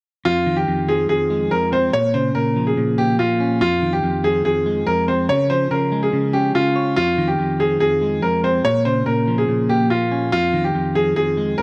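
Dark and tense, this drill-flavoured hip hop excerpt moves at 143 BPM with a half-time feel in F minor, cycling through Fm7, Bbm and Db from 0.3 to 11.6 seconds. A bright, woody upright piano sits up front carrying the melody, while a clean, fingered electric guitar, compressed and shadowy with spring reverb, supplies the accompaniment close beside it. A moderate concert hall reverb lends the whole a sense of space.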